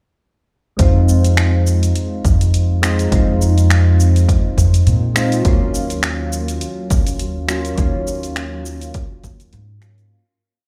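The upright bass stands out most, a woody, thumpy pizzicato line on gut strings sitting up front and playing a dub-style part low in the register from 0.8 seconds. This is a relaxed, smooth sunset chillout piece at 103 BPM in 4/4, with a swung sixteenth-note feel in Eb dorian. Soft, round electric-piano-like synth keys hold mellow rootless chords with syncopated pushes, coloured by chorus, phaser and delay, moving from Fm7 to Ebm9 at 5.5 seconds. An overdriven deep house kit lays down a light lounge beat of closed hi-hat, shaker and finger snaps in a small room, while a punchy electronic kick, also overdriven, drops out at 9.4 seconds. The whole short piece is one continuous groove that fades out from 7.0 seconds, heard as if through a big sound system in a bare room with large studio reverb.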